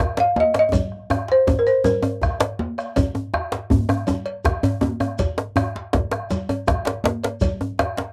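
This short cut from a longer piece sounds like a home cassette recording in a modest booth, with a brief, tight ambience. It is a driving, powerful West African drum ensemble in 12/8 at 108 BPM, counted in dotted quarters with a straight feel. A woody, round balafon played with rubber mallets sits up front and dry, carrying the melody between Bb4 and F5 from 0.2 to 2.2 seconds with a cassette tape colour. Beneath it, a deep djembe with metal rattles is struck with hard hands, close and prominent. A second, medium-tuned djembe sits in the background, ringing high-tuned congas are also played with hard hands, and a dark bombo booms from a live room alongside a metallic cowbell and a grainy, mellow, distant shekere. A drum fill runs from 0.7 seconds, leading into a second section at 3.0 seconds that carries the groove to the end.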